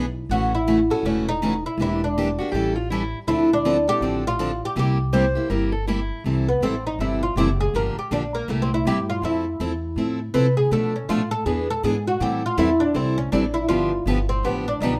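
A swung eighth-note feel in 4/4 drives this lively, playful slice of acoustic string swing in the jazz manouche style, cut from a longer piece. The upright bass is plucked on gut strings, with a woody, thumpy tone, while an up-front parlour steel-string guitar picks the accompaniment with a boxy, dark sound and audible finger squeaks. A plectrum-plucked fretless oud carries the melody from the start, its double strings giving a mellow voice. From 2.4 s to 6.2 s a second picked steel-string guitar adds a bright concert-guitar line with fresh strings and its own finger squeaks. At 6.2 s the oud takes a solo over a new section whose harmony moves through sixth, minor-seventh, major-seventh and dominant-seventh chords, all set in light reverb.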